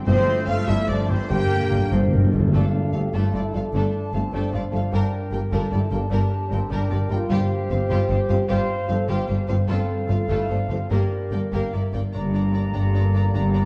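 Determined and swashbuckling, this heroic adventure film score excerpt in G dorian moves at 100 BPM in 6/8, with a lush, vibrato-rich symphonic violin section carrying the melody over rich cellos and clear, intense double basses holding a low G pedal, while a very quiet viola section, ringing harp arpeggios and sustained chords from distant French horns and a tight, very quiet trombone section fill out the harmony. Airy silver flute, a focused studio violin section and a dark, roomy clarinet, entering at 1.9 seconds, weave second lines, joined briefly by a distant oboe at the start and again from 12.1 seconds. Timpani with medium mallets punctuate the opening with a fill from 1.3 to 2.5 seconds and return later, all set in a dark, moderately reverberant scoring-stage sound.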